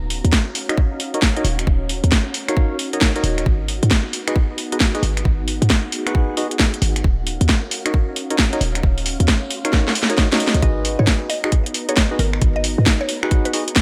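A silky, dark string machine pulses with sidechain pumping in the background beside a punchy, sine-toned 808-style bass as this moody, skippy two-step garage excerpt opens, soon joined by a tight kick, a cracking snare with warm hats and finger snaps, and hollow, wave-folded organ stabs through chorus and delay, before a drum fill at 9.7 seconds leads into a drop at 10.6 seconds where a woody, round FM pluck carries the melody with a cassette-tape tint, all set in light reverb.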